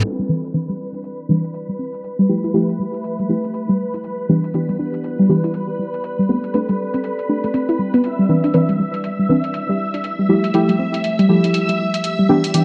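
A deep, mellow chord stab with a dark, vintage warble and tape echo sits up front in this smooth, deep house excerpt at 120 BPM with a swung sixteenth feel, joined at 0.2 s by a detuned, dusty sawtooth pluck playing arpeggios through chorus and tape echo, while a nostalgic, lo-fi tape-like pad holds sustained chords in the background, a shimmering string machine of violins adds bright, full-bodied ensemble texture up high, and overdriven metallic electronic hi-hats keep time, all over a Cmaj9, Fmaj9, Em7, Am11 progression, with filter sweeps across the stab, pad, pluck and the whole mix inside a lush hall reverb.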